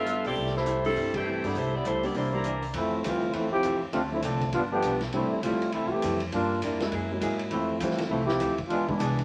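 Big band swing in C major, this energetic, joyful fragment of a longer piece moves at a brisk 201 BPM with a swing feel on the eighths. A smooth-topped saxophone section carries the melody at the start, with soft-attack trumpet stabs and a band accent at 1.1 seconds. At 2.7 seconds the mellow trombone section, tight and up front with light vibrato, takes over for a solo as the chords move through Fmaj7, Dm7 and G7 and on to an E7. Beneath it, a woody, thumpy upright bass on gut strings holds the low end, while a natural-sounding baby grand piano and a clean, compressed hollow-body archtop guitar sit in the background. A vintage kit with dark cymbals and a punchy kick keeps time on hi-hat, ride and snare, and a wet club reverb and a layer of vinyl crackle give the whole recording a period feel.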